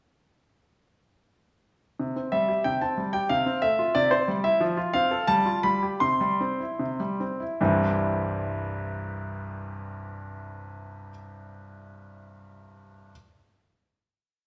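Elegant and graceful, this short classical-period piano sonatina in C major moves in 2/4 at a rubato pace between 73 and 93 BPM, slowing from 4.0 to 7.6 seconds before settling on a final chord at 7.6 seconds. A bright, brilliant grand piano plays alone from 2.0 to 13.1 seconds, spanning C2 to C6 with a single-line melody over a broken-chord bass, sitting up front and intimate with audible action noise. A wet recital hall reverb gives the polished playing a lingering 1.6-second tail.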